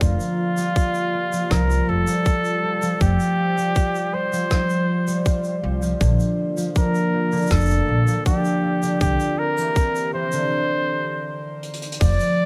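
Folktronica with a pastoral, delicate mood, where a clear, vibrato-laden flugelhorn carries the melody with scooped notes and delay over a mellow, ringing harp's fingerpicked arpeggios, a woody pizzicato upright bass, a tight electronic kick up front, a warm jazz brush kit with hi-hat, rim click and shaker, and a warbly, nostalgic lo-fi pad sitting in the background, all in light small-room ambience, with a brief break and a drum fill near 11.6 seconds closing this cut from a longer piece.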